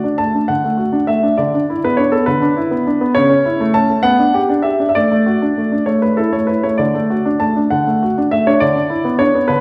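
A clear grand piano carries this short passage from a classical-period sonatina on its own, heard for the full 9.6 seconds in D major. The mood is cheerful and graceful, moving in 6/8 at 67 dotted-quarter beats per minute with a rubato feel. The piano tone is polished and intimate, sitting up front with long sustain and audible action noise, its part ranging from C#3 to A5. The harmony moves from D through E5/D, A/C#, G/B and D/A, reaching an A5 chord at 5.9 seconds before returning to D and closing on E5/D at 8.6 seconds. A wet recital hall reverb places the listener further back in the room, lending the clean, present playing a gentle halo. Cut from a longer piece, the passage feels like a poised phrase.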